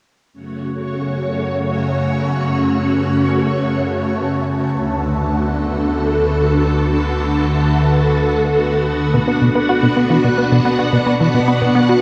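Ambient, sequencer-driven space music in F# minor at 109 BPM, this cosmic, hypnotic excerpt drifts through F#m, D and Bm. A phased string machine carries sustained chords up front from 0.3 seconds, its swirling, vintage sawtooth tone bright under ensemble chorus and phaser. Behind it, a bubbling stepped-filter texture sits in the background, its detuned, resonant sawtooth voice stepping through random filter changes with chorus and its own reverb, fading in across the passage. At 9.1 seconds a plucky analog bass enters with a punchy, funky riff, its fast-attack filter pluck decaying through analog chorus and delay. The whole mix is bathed in a huge, wet reverb with a 7.7-second tail and the worn, warbling pitch drift of old cassette tape.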